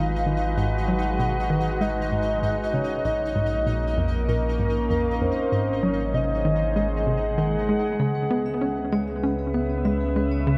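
An evolving, morphing wavetable pad sits up front in this cosmic, mysterious piece of sequencer-driven ambient space music at 97 BPM, its warbling chords moving from Abm7 through Bbm and Ab7 to C#m7 inside a vast cathedral reverb. Beneath it, a tight, punchy sequencer bass drives a detuned, plucky riff through tape echo, while a round, deep sub bass holds the floor and a pulsing, tempo-synced gated texture hums with chorus. A soft octave-layered synth lead carries a dark, vibrato-tinged melody until 7.1 seconds, and at 8.0 seconds a bright, metallic vibraphone played with hard mallets enters in the background with ringing arpeggios.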